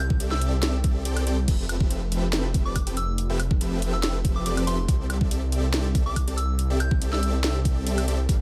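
A half-time 141 BPM groove in 4/4 drives this playful, bright future bass piece in C major, where an overdriven, knocking electronic kick sits up front (briefly dropping out from 1.1 to 1.5 seconds) beside a trap drum kit of sharp snare, metallic hi-hat, crash cymbal and woodblock, while a thick, detuned saw bass and huge, lush supersaw chords pump with sidechain compression and a soft, warbling FM synth bell carries a chorused, delayed melody high above, over a C6 to Fmaj9#11 and back to C6 progression in a digital ambience.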